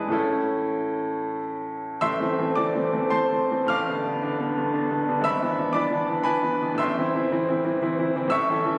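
Classical romantic character piece for solo piano in A minor, passionate and lyrical, moving in 3/4 with rubato between 91 and 122 BPM, its bright, brilliant concert grand sitting up front with deep bass and a natural tone across a range from G#1 to F6, while the harmony turns from A to A minor, then through Bm7b5/A and E7/G# before settling on Am at 6.8 seconds, all heard in a phone recording from the room with moderate scoring stage reverb, added studio reverb and compression, in a short passage cut from a longer piece.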